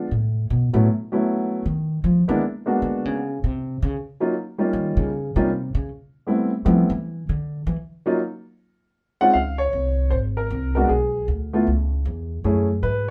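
This jazz excerpt opens with a smooth, vintage-toned grand piano carrying the melody, joined almost at once by a pizzicato upright bass. The mood is warm and sophisticated, swinging at 156 BPM in 4/4 with a gentle lilt on the eighth notes. The bass takes a solo through the first 9.4 seconds, its woody, growly steel-string voice sitting up front alongside the piano. The harmony moves through rich colors such as A6, Abm9b5, Eb9 and Fmaj9#11, with brief chordless breaks, before a new section arrives at 9.4 seconds and shifts to Db5, Abdim, Dbm and Gbm9. The two players sound as if they are performing live in one room, wrapped in a lush studio ambience, and the passage is cut at 13.1 seconds from a longer piece.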